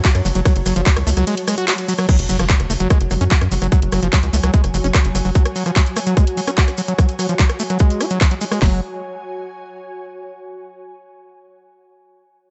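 Psychedelic and driving, this psychedelic trance passage opens on a drop with a brief break from 1.3 s, as a punchy sawtooth sequencer bass sits up front beneath a squelchy, resonant acid bass riff carrying distortion, sidechain pumping and dub echo. Two overdriven electronic drum kit layers supply a tight kick, cracking snare, bright hats, crash and ride cymbals, handclaps and rim clicks, with grainy maracas in the background and a very quiet electronic impact landing at 2.1 s. A pulsing, tempo-synced gated texture holds sustained chords while an ethereal, airy pad with ensemble chorus and reverb drifts behind, carrying on alone to the close at 10.2 s.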